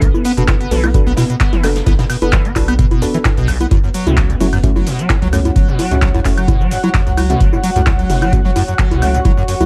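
A squelchy, resonant acid bass riff with lush chorus and tape echo drives this gritty, hypnotic acid house excerpt at 130 BPM in F# minor pentatonic, over a deep, up-front kick re-recorded in a large room, a round, nasal analog bass, a tape-warm drum machine of metallic hats, cabasa, congas, handclaps and woodblock, a very quiet, distant brushed kit, a blurred granular cloud pad and soft, dark chord stabs entering at 0.4 seconds, all moving from Bm7 to F#m7 with sidechain pumping on the basses and pad.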